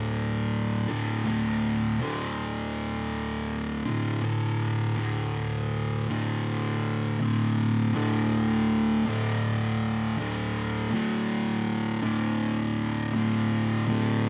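A dark, compressed fuzz guitar, double-tracked and up front, takes the solo role in a low register for this hypnotic, ominous metal excerpt, shifting into a new section at 5.0 seconds before cutting off at 14.3 seconds, all set in the moderate reverb of a small room where it was captured live.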